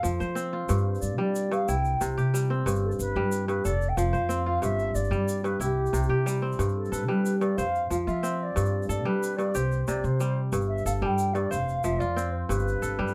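Rolling in a straight 12/8 at 122 BPM in G mixolydian, this flowing West African string and xylophone excerpt pairs the crisp, ringing fingerpicked kora arpeggios and the dark, woody pizzicato upright bass up front with a grainy, bright tube shaker and a distant, pure wooden flute melody with tongued notes and vibrato, all in a moderate small-room reverb over a repeating F, G and C cycle.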